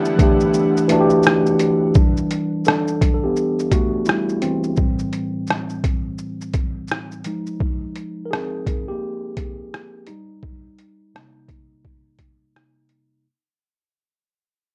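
A mellow tine electric piano and a lush, detuned sawtooth pad with chorus open this nostalgic, melancholic lo-fi hip hop excerpt at 85 BPM in E minor, joined by a gritty, pitched-down trip hop sampler-style kit of hi-hat, rim click, shaker and thumpy overdriven kick, which falls silent from 0.5 to 2.0 seconds; after the pad ends at 1.9 seconds, the clean, up-front electric piano takes a solo through a long fade-out over Em7, Am7, Fm9 and Cm7, the mix coloured by worn, warbling cassette tape drift and a moderate studio reverb.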